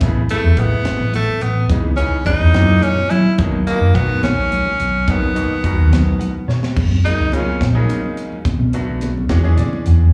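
An edgy, forceful tenor saxophone with scooped notes, slapback and tape echo carries the melody from 0.3 s to 7.6 s in this funky, slick electric jazz fusion cut at 71 BPM in 6/8, over a round, dark hollow-body electric bass up front, a tight funk drum kit with a high-tuned snare and a drum fill, distant, damped congas in the background, and a brilliant concert grand piano with slapback echo that adds fills as the key shifts from B major to F# major at 6.8 s, captured live through a club PA with small-room ambience.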